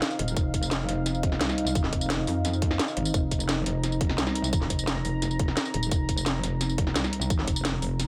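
Light reverb colours this short excerpt of aggressive, mechanical dark technical drum and bass at 173 BPM, with a deep, detuned analog pad holding sustained chords on an F5 from the start, its chorus and sidechain pumping tucked low in the mix. The layered electronic kit, re-recorded in a small room, sits up front with a cracking snare, metallic hats and tambourine, while a tight electronic kick joins at 0.4 s. Entering at 0.2 s, an up-front FM wobble bass snarls with fast-attack, tube-saturated grit, chorus and sidechain pumping.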